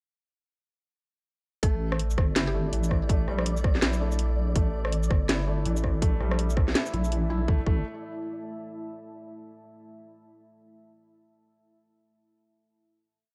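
Heavy and spacious, this short half-time drum and bass piece moves at 164 BPM in 4/4 with a swung 16th feel, and its dark production sits in light reverb. The drop arrives at 1.6 seconds, when a hard-clipped electronic kick and a sparse kit of cracking snare, rim clicks, bright closed hats and shaker land up front. A deep, compressed wobble bass joins them there, its modulated phrases shifting in wobble speed under chorus and tube saturation. A felt-muted upright piano plays a soft, intimate 16-step arpeggio through delay, its action noise audible. Further back, a woody, round FM mallet pluck offers short melodic phrases, and a flickering, grainy texture holds a single high note. From 5.6 seconds a moody, detuned ambient pad fades in with slowly shifting chords and sidechain pumping, and it carries the final chord from 7.5 seconds to the close.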